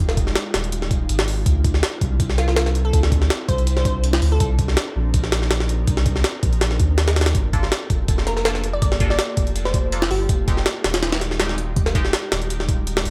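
Dry and close, this short cut from a longer drum and bass track drives at 163 BPM in G minor with a frenetic yet atmospheric energy. Up front, a gritty, pitched-up jungle sampler-style kit rattles through hi-hat, a thumpy kick and a high-tuned snare, its compressed, tape-warm hits carrying the sheen of a large room. Beneath it a deep, round dub sub bass holds steady, while an ethereal pad with slow-blooming, detuned sawtooth voices, ensemble chorus and its own reverb floats in the background over a drifting progression of minor ninth chords from Fm9 through Dm9, Cm9 and Gm9. A glassy, crystalline wavetable pluck appears in two short phrases, first at 2.4 seconds, colored by chorus, cassette tape and dub echo. From 7.5 seconds a nasal, band-passed chord stab adds bright, decaying hits treated with phaser and dub echo, sitting back in the mix behind the drums.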